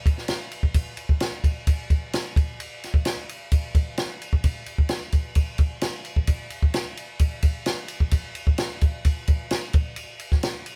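Dry and close, as if a band were playing live in one room, this short cut from a longer rock piece features a compact acoustic cocktail drum kit from 0.1 to 10.8 seconds, its punchy kick, high-tuned snare and dark ride cymbal sitting up front in a straight 4/4 feel that comes across as wistful and intricate.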